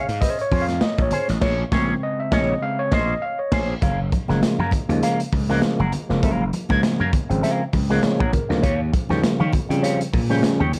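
Cool and funky, this short cut from a longer piece sits in a lightly swung sixteenth-note groove in 4/4, carried on a soft light reverb and the hazy character of cassette tape. An overdriven tine electric piano, run through a combo amp and treated with analog delay, opens with a solo over a Bbm9 chord and punches out stabs up front, with a band accent from 1.4 to 3.8 seconds. At 3.8 seconds the harmony shifts to Gbmaj9 for a longer second section, and the electric piano adds a fill from 7.7 to 8.6 seconds before the move to Eb9. Beneath it, a growly, punchy slap bass with overdrive drives the low end, while a crunchy breakbeat kit of kick, snare, hi-hat and crash, saturated with dark cymbals and a rolled-off top, sits close and tight. A bright, twangy, scooped guitar through an envelope filter with wah and vibrato adds clean picked accompaniment, and very quiet congas with thin, damped skins fill in the percussion.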